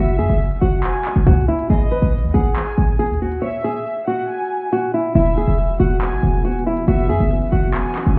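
Hip hop and trap with a melancholic, menacing half-time feel: a boxy, fingerpicked nylon-string guitar carries the melody up front while a soft, floating bowed violin section adds a second line above it, both touched by tape echo. A punchy, tight 808-style bass and a trap kit with a hard-clipped kick, crisp hi-hats and handclaps drive the groove, with a break from 3.4 to 5.2 seconds. A deep, dark, detuned ambient pad with chorus swells in at 5.7 seconds, and the whole excerpt sounds muffled, as if heard through a wall, bathed in club reverb.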